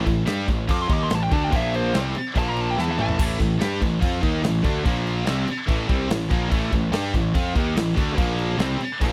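A dry, close recording in a 1970s studio style frames this epic, dark heavy metal passage, cut from a longer piece. Up front, a growly, punchy fuzz bass sits beside an acoustic drum kit with an airy, polished studio sound, its medium-tuned snare, kick, toms and crash holding a straight four-four pulse. In the background, a biting, double-tracked overdriven guitar and two bright, heavily distorted high-gain guitars play the riff together, moving between Am and Bb5 chords. At 0.7 seconds a high-gain lead guitar enters with a distorted solo melody in a higher register. It ends at 3.2 seconds along with a drum fill that runs from 2.8 seconds, and the passage moves into a second section over the same chords.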